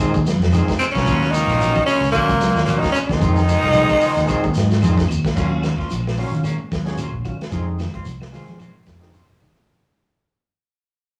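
A raspy, gritty tenor saxophone leads up front from 0.8 to 4.8 seconds, shadowed by a punchy baritone saxophone with tape echo and a buzzy, metal-muted trombone in a short horn line over a hypnotic, driving afrobeat groove at 111 BPM in Eb dorian, swung on the sixteenths. Beneath it, a crunchy breakbeat kit with a punchy kick and dark cymbals, a round fingered electric bass, woody claves and a grainy shekere keep the pulse. Two slightly broken-up electric guitars, one on arpeggios and one on twangy stabs, and a fat percussive tonewheel organ with key click and slow rotary speaker circle between Fm7 and Ebm9 in a rough rehearsal-room sound with tube saturation, before the music fades from 5.4 seconds.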